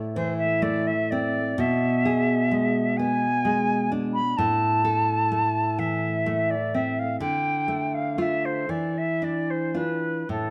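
A melancholic, solemn romantic duo in A minor, drifting at a rubato 42 beats per minute in dotted-quarter 6/8 and tuned slightly low to A4 = 438 Hz, in which a full-bodied, fingerpicked nylon-string guitar lays a deep classical accompaniment through Am, E7/B, Dm and Dm69/E while a pure, tongued silver concert flute sings the melody up front with vibrato, all caught by close, detailed microphones in light reverb in this brief excerpt from a longer piece.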